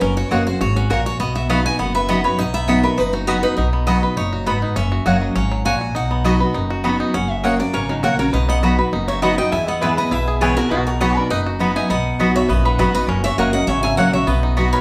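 A twangy, percussive banjo played with fingerpicks carries the melody in this driving, virtuosic bluegrass excerpt in B major, moving at a brisk 202 BPM in straight 4/4. A bright picked steel-string concert guitar also plays melody higher up, while a dreadnought guitar with fresh strings supplies the accompaniment and sits loudest in the mix. A growly, up-front upright bass played pizzicato anchors the low end, and a woody mandolin with double strings adds stabs from 0.3 seconds. At 7.7 seconds a metallic, nasal lap resonator guitar joins with a slide second line. The chords move among F#, B and E, and the band plays live in one room, bathed in a large, wet studio reverb.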